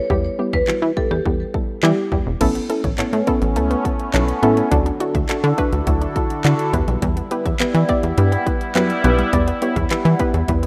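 A bright, woody marimba struck with hard mallets opens this carefree, summery dance-pop excerpt at 104 BPM in a straight 4/4, carrying the melody through a digital delay until 2.1 seconds. Almost at once a soft, round pluck with a dark, chorused tone settles in as accompaniment, joined by a punchy, funky analog bass that sits up front and pumps against the sidechain, and a produced electronic drum kit with a punchy kick, hi-hat, handclaps and crash cymbal. At 2.4 seconds the arrangement fills out as an evolving, resonant pad enters with slow-attack sustained chords, shimmering through chorus, phaser and sidechain pumping. Alongside it, a lush, detuned unison pluck adds very quiet, sparkling arpeggios. The harmony moves from Em through Aadd9 and Dadd9 before returning to Em, all set in light reverb with the rough feel of a home demo mix.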